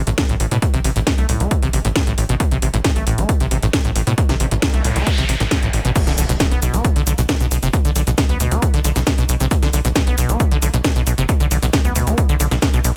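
A straight 4/4 pulse at 135 BPM drives this hypnotic, industrial slice of peak-time techno in B phrygian, cut from a longer piece. A punchy, layered electronic kick anchors the groove, while the techno kit adds a cracking snare, metallic hi-hats, shaker and crash cymbal. Up front, a tight sequencer bass built from sawtooth and square waves plucks through a filter with a fast, decaying attack, thickened by tube saturation and pumping against the kick. Above it, a squelchy, resonant acid saw riff carries a filter sweep, lush chorus, cassette-tape grit and dub echo, and it pumps with the kick as well. A background noise sweep runs from 4.5 seconds into a drop at 6.0 seconds, where an impact hits and the harmony shifts from A minor to B minor, all in a dry, close-sounding mix.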